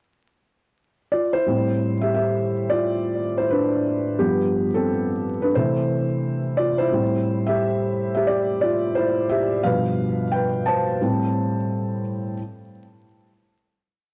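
Nostalgic and reflective, this short hip hop piece sets a felt-muted upright piano alone up front, its soft, mellow tone thickened by heavy felt and softened further by a low-pass filter. The piano enters at 1.1 seconds with held, spread-voiced chords that repeat like a sampled loop, drifting through a gently swung groove from Am11 to G7, C6 and back to Am7. A dry, gritty hardware sound with light reverb and vinyl crackle gives the whole an intimate character until it closes at 12.4 seconds.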